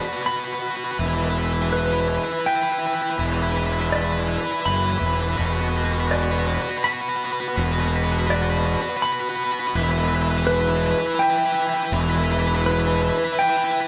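A band playing together in one room, caught with a moderate studio reverb, opens this brooding, cinematic post-rock passage, a build-up in 3/4 cut from a longer piece. Up front, a bright, double-tracked fuzz guitar picks a distorted, compressed riff, a round, overdriven fingered fuzz bass joins at 1.0 s, and a clean, twangy lap steel sings the slide melody above them. The harmony rests on Bm/E before shifting to Em at 9.8 s.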